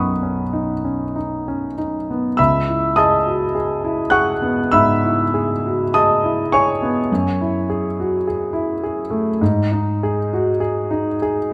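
A clear concert grand piano plays alone in this short impressionist classical excerpt, which is cut from a longer piece and lasts 11.5 seconds. The mood is luminous and hazy, moving at a slow 51 BPM in 4/4 with a rubato feel that lets the time breathe. The harmony drifts through lush extended chords, from B9 at the start to C#m11 at 2.4 seconds, then F#m9, and finally a G#7 with its third omitted. The piano spans C#2 to F#6, with deep bass anchoring its natural, up-front sound, and the audible action noise lends an intimate closeness. A moderate recital hall reverb of about 1.5 seconds surrounds the instrument, softening the edges into a gentle glow.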